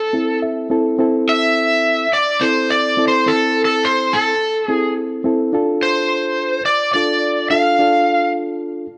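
A straight 4/4 pulse at 106 BPM carries this mournful, smoky blues in A minor, a short section cut from a longer piece that moves from Am to Dm at 5.5 seconds. Up front, a bright, overdriven electric slide guitar sings the melody between A4 and F5, fingered with the slide. Beside it, a reedy, clean electric piano heard through its built-in speakers plays the accompaniment with a spring-reverb sheen, opening with a fill from 0.1 to 1.0 seconds, all set in a light reverb.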